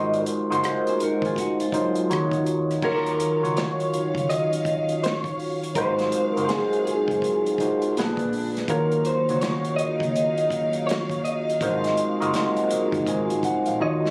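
A barky, gritty overdriven tine electric piano sits up front with phaser and plate reverb in this introspective, late-night neo-soul and R&B excerpt at 82 BPM in Eb dorian, swung on the 16ths over chords of Ab13, Ebm9 and Bb7b9. A slightly broken-up, compressed electric guitar through a small old amp carries the melody with vibrato and slapback echo, while a round, foam-muted bass and a muffled, lo-fi soul drum kit with dark cymbals hold the low end, the drums closing on a fill at 13.8 seconds. A small, fingerpicked nylon-string guitar adds a brief second line from 0.9 to 2.1 seconds, and from 2.8 seconds a smooth, bowed string section sustains chords in the background, all within a phone-recorded club room.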